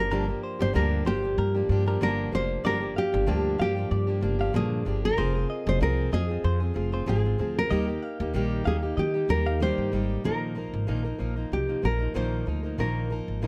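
Acoustic pop in a carefree, heartfelt mood with a gentle swing, where a dark, full-bodied nylon-string guitar carries the fingerpicked melody in plate reverb over a fingerpicked plugged-in steel-string acoustic guitar and a woody, thumpy pizzicato upright bass up front, while a clean, compressed direct-recorded electric guitar adds picked arpeggios from 0.1 to 9.6 seconds as the chords move from Gm7 through Fm and Eb to a closing Bbsus4 in this short cut from a longer piece.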